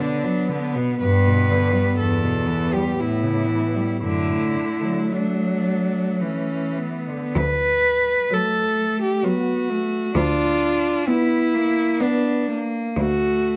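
A rich, close cello sings the melody up front with smooth vibrato in this tender, rubato classical excerpt for four bowed cellos in D major and slow 3/4 at 49-66 BPM, joined by a focused second cello line, a clear, distant accompanying cello that stops at 12.7 s, and a bright, intense bass cello entering at 1.0 s, all set in a moderate large-studio reverb as the harmony moves from B minor through G and E minor toward D.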